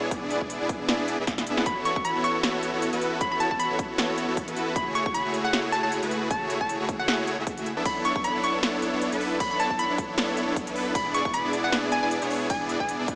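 A bittersweet, emotional future bass cut opens on huge, lush supersaw chords pumping up front over a deep, saturated sub bass in the background, joined at 0.1 seconds by punchy, tape-touched drums with crisp hats, snare and ride re-recorded in a large room, and after a drum fill a hollow, bouncy square-wave pluck carrying chorus and tape echo enters at 1.7 seconds, all at a half-time, lightly swung 155 BPM moving from E7 through A69, F#m9 and Bm11 back to E7 with light reverb and a small-speaker sound.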